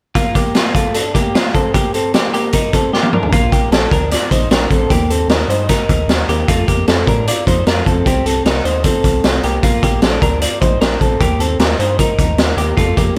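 Nostalgic and youthful, this jangly indie pop cut moves at a brisk 152 BPM in a straight 4/4, set in Bb major. A bright, twangy twelve-string electric guitar sits up front from the start, playing clean, picked arpeggios with a compressed sheen and a touch of analog delay. Alongside it, a raw garage drum kit of hi-hat, kick, snare and toms sounds gritty and saturated, with a boomy kick, a high-tuned snare and a rolled-off top. A drum fill at 2.9 seconds leads into the fuller second passage at 3.3 seconds, where a round, deep analog bass enters with a dark, sustained tone and a fast attack. The chords cycle through Bb, Eb, F and Cm, and the whole sits in light reverb with a small-room ambience, an excerpt cut from a longer piece.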